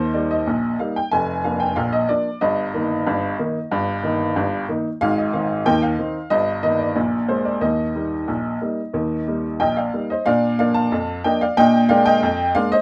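Set in a moderate studio reverb, this lively, jaunty ragtime fragment, cut from a longer piece, features a solo upright piano, up front, clear, woody and slightly detuned, moving through bright major-key changes in a straight 2/4 before shifting to a new section at 10.3 s that lands on a dominant seventh.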